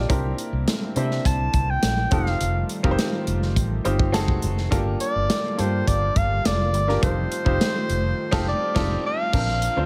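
Slick and nocturnal, this short cut from a longer piece is polished 1980s jazz-funk pop at 104 BPM in a straight 4/4. A breathy clarinet carries the melody up front from 1.0 seconds, its subtone and light vibrato giving a jazz solo character. Beneath it, a clear baby grand piano with subtle chorus plays accompaniment, while a shimmering, retro pulse-width pad holds mellow sustained chords in the background. A round, amped fretless electric bass anchors the low end, and a modern studio drum kit with punchy kick, bright cymbals, snare, hi-hat, crash and gated reverb sits up front. The harmony moves through C9, F9, F#dim7 and Gm7 before the band hits an accent from 8.2 to 9.3 seconds and arrives on Bbmaj7, heard in light reverb with small room ambience.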